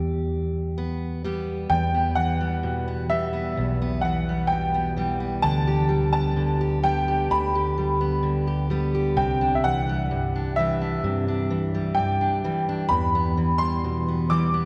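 Reflective and haunting, this slow acoustic folk excerpt in E minor at 64 BPM sets a bright, slightly detuned upright piano melody up front over a full-bodied fingerpicked steel-string guitar and a dark, round, punchy fingered electric bass, moving from Em through G/D and Cadd9 back to Em, all bathed in the long, wet reverb of a church or concert hall.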